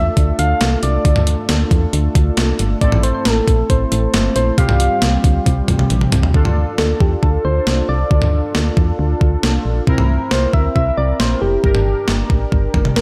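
A gentle, keys-like FM synth lead with chorus and tape echo carries a melancholic, cool synth-pop melody over fat, sawtooth synth brass chords and a punchy, dark FM bass, joined at 0.2 seconds by an overdriven, thumpy 12-bit drum machine with gated reverb, whose fill at 5.9 seconds leads into the second section of this short cut from a longer piece.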